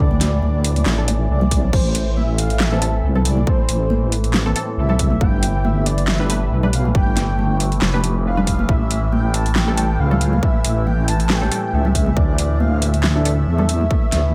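A breathy, flute-like synth lead opens this excerpt of deep dubstep in A minor together with an overtone-sweeping drone and a deep, soft wobble bass. The groove runs at 138 BPM with a half-time, lightly swung feel. The mood is heavy yet meditative: the lead floats softly with vibrato, chorus and dub echo, while the drone warbles with a vintage, resonant character under its own built-in reverb. The wobble bass sits up front, dark and compressed, and from 1.0 s a muted, detuned dub chord stab plucks quietly in the background, coloured by cassette tape and dub echo. Congas with a bright, thin skin sound distant in a large room, and the dubstep drum kit brings a huge snare, metallic hats, handclaps and crash cymbal. A punchy, tape-warm electronic kick comes in up front at 1.5 s, as the chords move from Dsus2 through Am, G and A7 in a dreamy mix soaked in plate reverb.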